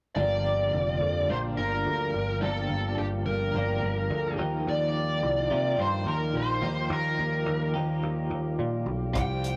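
A rough rehearsal-room recording with tube saturation and a short, wet booth ambience gives this dark, hypnotic psychedelic rock passage a close, gritty character. Cut from a longer piece, it moves at 107 BPM in a straight 4/4 in G minor, shifting from Gm7 to Ebadd9 at 4.4 seconds. Up front, a dark, smooth lead guitar carries the melody through wah, overdrive and analog delay, while a bright, twangy twelve-string electric guitar plays a clean, compressed riff with tremolo. A punchy picked electric bass sits forward in the mix, and a reedy, overdriven combo organ holds sustained chords in the background with heavy vibrato. A dry, damped 70s drum kit with a tight kick and rolled-off top appears only at 9.2 seconds, adding hi-hat and kick just before the passage ends.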